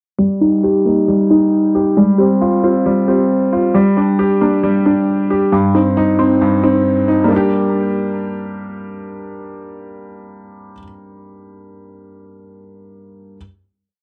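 Set at 135 BPM in 4/4 with a half-time feel, this short, dark and hard-hitting trap piece in G phrygian rests on two looping eighth-note arpeggios that repeat like a sampled phrase. Up front, a dark concert grand piano plays the accompaniment from G2 to G4, its mellow, intimate tone carrying deep bass and audible action noise, softened by a low-pass filter and a vintage cassette-tape character. Behind it, a glassy wavetable pluck spins crystalline, detuned arpeggios between G3 and G4, its fast attack decaying into a chorus-thickened shimmer with a noise layer, analog delay and a filter sweep across the breakdown from 0.2 to 7.3 seconds. The harmony moves from Eb/G through Fmadd9/G, Gm and Cm/G before settling on a final Gm chord at 7.3 seconds, with the pluck dropping out at 10.8 seconds and the piano alone until 13.4 seconds. A wet studio reverb and the texture of a home cassette recording give the whole a lo-fi atmosphere.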